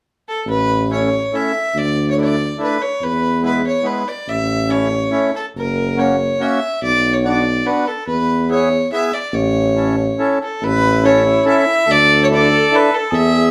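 In a straight 3/4 dance feel at 142 BPM in A major, this festive, jolly alpine folk fragment puts a rich, nasal fiddle melody with plate reverb up front over a clear, vintage solo tuba bass and a reedy, full, dry-tuned accordion, with a mellow cor anglais second line joining at 10.6 seconds with light vibrato, as the harmony passes through F#7 and Bm and the dance band sounds from further back in a small, wet room.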